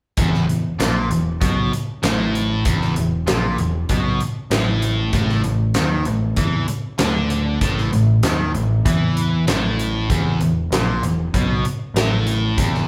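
A straight 4/4 pulse at 97 BPM drives this confident classic rock cut from a longer piece, with a huge arena drum kit's punchy kick, fat snare and hi-hat up front in a big room, a double-tracked, overdriven electric guitar riff colored by phaser, and a dark, round, overdriven picked bass beneath, as the band plays live together under light reverb and moves from E5 to A5 at 5.1 seconds before returning to E5 at 10.1 seconds.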